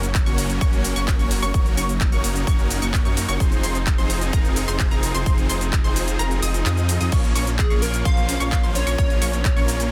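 Festival progressive house at 129 BPM in Bb minor, anthemic and emotional, moving through Gb, Fm7 and Bbm in this brief cut from a longer track. A punchy, overdriven kick sits up front over a layered big-room kit of crash, handclaps, hi-hat and shaker, while a thick, saturated detuned saw bass, huge supersaw chord riffs with digital delay, a background arpeggiating pluck drenched in lush chorus, and clear, biting bowed strings holding sustained chords all pump against the sidechain. The kick drops out from 6.2 to 7.1 seconds, and at 7.6 seconds a catchy plucky unison lead enters with a filter sweep, cassette tape colour and delay, all inside a dense, heavily limited, fairly dry master.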